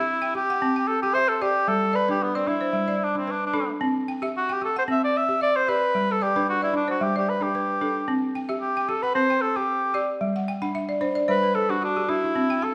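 This West African traditional piece moves at 112 BPM in 4/4, with a gentle 16th-note swing and a flowing, warm mood in C Lydian, tuned slightly sharp to A4 = 441 Hz. Up front, a cor anglais carries the melody through the whole passage, played in a classical style with expressive vibrato and a warm voice. A balafon, played with rubber mallets, supplies arpeggios throughout, its woody, buzzing tone sounding full and close. At 10.3 seconds the balafon breaks into a fill that runs to 12.3 seconds. The harmony sways between C and G, landing on a G5 chord near the end. A resonant recital-hall reverb gives the pair a spacious, church-like glow, and the recording is cut from a longer piece.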